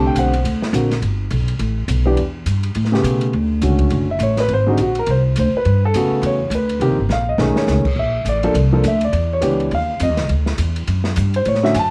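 A grand piano leads this swinging jazz trio fragment, its natural, up-front tone carrying a cassette-tape coloring as it states the melody and then takes a solo from 3.3 seconds. An upright bass plucks a woody, steel-strung line just as close in the mix, playing beneath the piano through the whole passage. Further back sits an airy, polished drum kit, with dark cymbals, a medium-tuned snare and a boomy kick, and a short drum fill arrives at 7.1 seconds. The harmony moves briskly through rich, colorful chords, from an augmented opening through sharp-eleven and extended voicings before settling home. A light small-room reverb and the faint mains hum of a home cassette recording give the whole a cozy, intimate feel, as if caught mid-performance from a longer piece.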